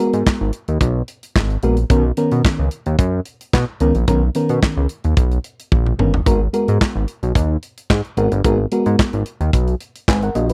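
Early-eighties boogie funk at 110 BPM with a danceable, feel-good mood, this short section cut from a longer piece pairs a soft, round, warbling FM electric piano with chorus moving between G#m9 and Bmaj9, a glossy chorused synth bass built from pulse, sawtooth and triangle waves with ring modulation and a filter sweep, and a punchy studio drum kit of kick, medium-tuned snare, hi-hat, toms and handclaps that plays a fill at 5.7 seconds, all captured in a dry, close 1970s-style studio sound.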